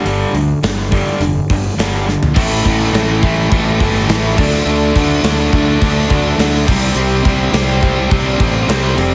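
A dry, heavily compressed radio-style sound frames this heavy, aggressive hard rock excerpt in A minor at 104 BPM, led up front by a gated 80s drum kit with bright cymbals and a punchy kick that plays a fill at 2.1 seconds. An overdriven semi-hollow guitar and a tight distorted guitar pick the riff from the background over a growly, fuzz-soaked fingered bass, and a double-tracked high-gain distorted guitar joins at 2.3 seconds. From 2.4 seconds a very quiet, mellow tonewheel organ with third-harmonic percussion and a slow rotary speaker holds sustained chords as the progression, which opened on G5, moves through A5, D5 and C5.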